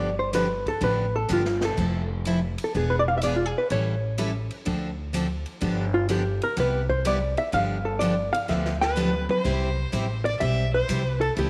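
A dark, clean hollow-body jazz guitar leads from the start of this swinging, playful country western swing excerpt, up front beside a bright, full-bodied picked steel-string acoustic guitar and a woody, thumpy pizzicato upright bass, while an airy, polished big-band drum kit joins in the background at 0.3 seconds and adds fills, and a clear, focused bowed fiddle with light vibrato enters at 8.8 seconds, shortly before the chain of seventh chords resolves to C, all set in moderate spring reverb and small-room ambience.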